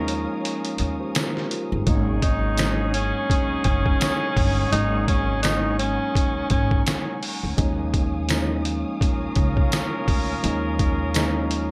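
Tough and gritty, this boom-bap hip-hop cut moves at 84 BPM with a swung sixteenth-note feel, drifting between D#9sus4 and G#9sus4 chords as part of a longer piece. A compressed, pitched-down sampler-style kit sits up front with a thumpy kick and a medium-tuned snare that sound re-recorded in a large room, while a woody, growly pizzicato upright bass anchors the low end and a jingly tambourine rattles in the background from 1.1 seconds. A worn, slightly out-of-tune tine electric piano carries the accompaniment through a cassette-tape haze, with a lush bowed string section holding smooth chords behind it. Vintage-sounding horn stabs with light vibrato cut through, treated with plate reverb and tape echo. At 2.2 seconds a breathy tenor saxophone takes a brief jazz-style solo of scooped, vibrato-laden notes that ends by 6.8 seconds.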